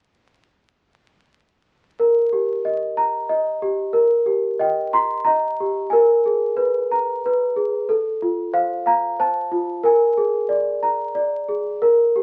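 A worn, bell-like celesta, slightly out of tune and sitting up front, carries a tender, innocent children's melody in three-four time from 2.0 seconds, moving through Eb, Abmadd9, F and Bb7 chords in a short passage cut from a longer piece, all heard through a wet studio reverb and the crackle of a very old 78 rpm record.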